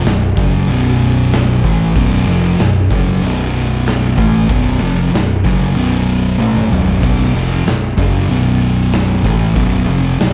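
Dark, close production with a small-room ambience sets a heavy, murky tone for this short stoner and doom metal excerpt. Two thick fuzz guitars carry the riff from the first second, one warm, distorted and up front, the other darker and pushed into the background, both grinding around a B5 chord in a low register. Underneath, a growling picked electric bass adds a bright, punchy overdriven edge, direct and amped, sitting in the deep bottom range. An oversized low-tuned drum kit joins at 0.1 seconds, sounding saturated and gritty in a big, pumping room, with a boomy kick, medium-tuned snare, hi-hat, toms and crash cymbal. A drum fill between 6.4 and 7.0 seconds breaks the hypnotic, ominous plod in straight 4/4 before the riff rolls on.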